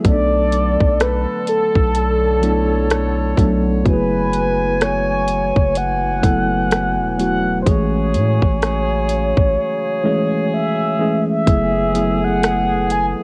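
Dry home-cassette sound frames this sensual, late-night contemporary R&B excerpt at 63 BPM with a swung sixteenth feel, as a worn, slightly out-of-tune tine electric piano and distant, roomy brass chords with sidechain pumping sit beneath a round, horn-like sawtooth synth lead carrying chorus, vibrato and analog delay, while a deep sine 808 bass and an up-front trap kit of hard-clipped kick, metallic hats and rim clicks anchor the low end until the drums fall silent from 9.6 to 11.5 seconds, over chords moving from Bm7 through F#m11 to Amaj7.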